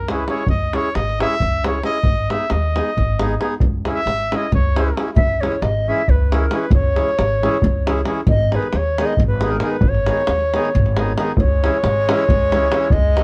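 A clear, classical-style trumpet solo opens this fiery, bittersweet Balkan wedding-band fragment in 7/8 at 270 BPM in C# minor, over thumpy pizzicato upright bass, a hollow, mid-forward accordion and a deep, vintage davul, until a bright, airy end-blown ney takes the melody up front at 5.2 seconds and the trumpet returns as a second line at 11.4 seconds, the whole heard through a dark production with light reverb.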